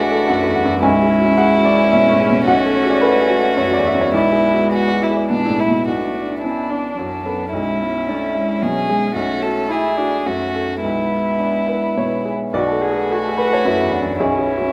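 A rich, intimate solo violin carries the melody with light vibrato and an airy sul tasto bow in this melancholic, reflective neoclassical piano-and-strings excerpt in B dorian, moving in a rubato 3/4 at 109 BPM, where a bright, woody, vintage upright piano accompanies up front, a pure, floating cello traces a second line, a warm viola sits in the background, and a mellow, thumb-plucked Celtic harp rings out arpeggios that pause at 9.2 seconds and return at 12.5 seconds, all set in a moderate recital hall reverb.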